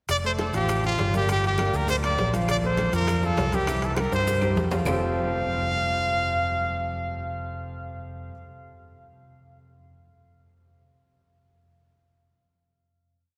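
Salsa at a brisk 201 BPM in F major, sunny and danceable, with a forceful, up-front trumpet singing scooped hook phrases with light vibrato over a dark, punchy electric bass tumbao that anticipates the chords, a brilliant grand piano montuno in octaves with audible action noise, and very quiet congas, tight bongos, ringing timbales, woody claves and grainy maracas that drop out after a drum fill ending at 4.9 seconds, leaving the final Fadd9 chord to bloom in a cavernous cathedral reverb.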